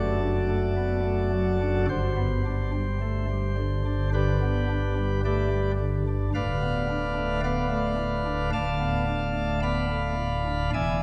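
Moving freely at a slow 54 BPM in 4/4, this grave, dark classical chorale-style passage, cut from a longer piece, features a solo pipe organ whose light flute stops have a sparkling chiff and a bright baroque voicing, placed up front and spanning D1 to B5. The harmony moves from D/F# to G at 1.9 seconds, then settles on Bm7b5/D at 6.3 seconds. A wet church reverb, lingering 2.8 seconds, surrounds the organ within a dark, warm production.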